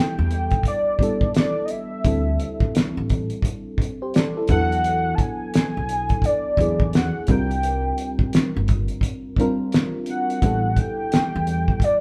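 Lightly reverberant and close, like a band playing together in one small room, this soulful, introspective neo-soul R&B excerpt moves with a swung sixteenth-note feel over suspended ninth chords on A, D, E and C. A velvety, detuned sawtooth synth lead with vibrato and chorus carries the melody up front, over a mellow, warbling FM electric piano with a round, vintage tone. Underneath sit a woody pizzicato upright bass entering at 0.2 seconds and a cloth-damped, thuddy drum kit with a fat snare, tight kick, hi-hat and a gritty, rolled-off top.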